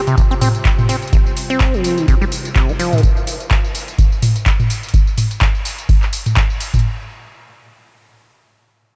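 A swung 4/4 groove at 126 BPM drives this gritty, raw acid house drop, cut from a longer piece, with a deep, dry electronic kick up front and a booming, tape-tinged analog drum machine supplying handclaps, metallic hi-hats, tambourine and toms. Over a C5 chord, a squelchy, resonant sawtooth acid bass riff with filter sweeps, phaser, tube saturation and analog delay sits beside a dark, warbling lo-fi pad of nostalgic square and triangle tones with chorus, slow attack and sidechain pumping in the background. Both bass and pad drop out at 3.0 s, leaving the drums to carry on until 6.9 s in a lightly reverberant digital ambience.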